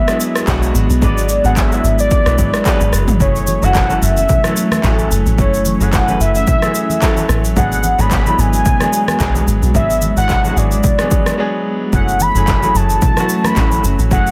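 A dense, heavily limited modern mix with little reverb frames this hypnotic, soulful amapiano passage, cut from a longer piece and carried by a swung sixteenth-note feel. A velvety synth lead built from sawtooth and triangle tones sings the melody from the start, with chorus, vibrato and tape echo giving it a smooth, sustained voice. Beneath it, a clear baby grand piano plays the accompaniment, and a glassy FM pad holds ethereal, mellow chords in the background through ensemble chorus, phaser and its own reverb. The deep house drum kit arrives at 0.1 seconds, up front and layered with handclaps, a punchy kick, rim click, shaker and toms, all re-recorded in a small room. The log drum bass follows at 0.5 seconds, round, dark and percussive with a fast attack and decaying tail, and bright, close congas played with soft hands join in the background at 3.2 seconds. The harmony alternates between a half-diminished seventh and a minor ninth chord, with a short break at 11.4 seconds before the final chord returns.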